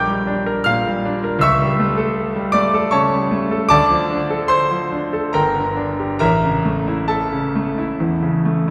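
Passionate and brooding, this brief excerpt of a romantic classical character piece in 3/4 with free rubato features a solo concert grand piano, brilliant and polished with a deep bass and short sustain, ranging from low to high register and heard from further back in a concert hall whose lush reverb lingers around each chord.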